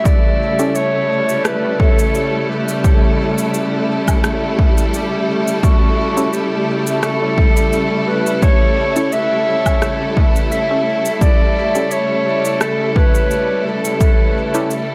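A punchy, overdriven electronic kick sits up front in this hazy, spacious ambient dub fragment, beneath smooth, vibrato-rich bowed strings holding an A7 chord, a mellow, distant clarinet melody trailing dub echo, echoing electronic cabasa, rim click and woodblock, and a very quiet, muted, detuned sawtooth chord stab that flickers at 0.6 seconds and returns at 6.2 seconds, all bathed in spring reverb.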